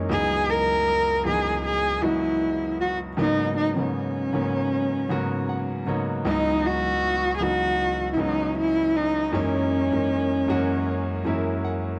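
A single bowed cello carries the melody up front, its tone dark and woody with a singing vibrato, moving within a narrow upper register from 0.1 seconds onward. Beneath it, a grand piano supplies the accompaniment across a broad span of the keyboard, its sound clear and intimate, with the soft mechanical noise of its action audible close up. This is a sensual, moody R&B piece in C# dorian at a slow 78 BPM in 4/4, with a light swing on the sixteenth notes and tuning set to A4 = 436 Hz. The harmony moves through lush extended chords, from C#m11 to G#m11, back to C#m11, and on to F#13, while the piano steps forward with fills at 4.7 and 10.9 seconds. A light studio reverb and a dark, mellow production with a rolled-off top end and a faint mains hum give this fragment of a longer piece a close, late-night atmosphere.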